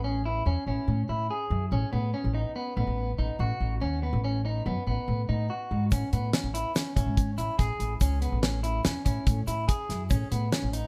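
An up-front sound in a light reverb opens this intricate, driving progressive instrumental, cut from a longer piece, moving at 143 BPM in a straight 5/4 in A lydian over Amaj7 and B7/A. A compressed, slightly broken-up electric guitar picks arpeggios through tape echo alongside a woody, dark pizzicato upright bass, both from the start. At 5.9 seconds a dry, damped 70s drum kit with a fat snare and tight kick joins on hi-hat, kick and snare, while a grainy egg shaker sits in the background.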